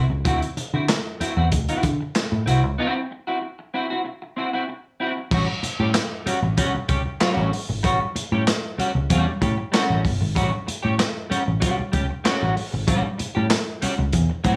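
Funk with a strutting, funky mood, cut from a longer piece, where the harmony moves from a rootless D9 to A6 at 5.3 seconds, carried by a clean picked electric guitar with analog chorus over a dark, round, foam-muted vintage bass and a gritty, saturated breakbeat kit of tight kick, medium-tuned snare, handclaps, hi-hat, crash and dark cymbals that enters at 0.3 seconds, with a break from 2.8 to 5.3 seconds and light studio reverb.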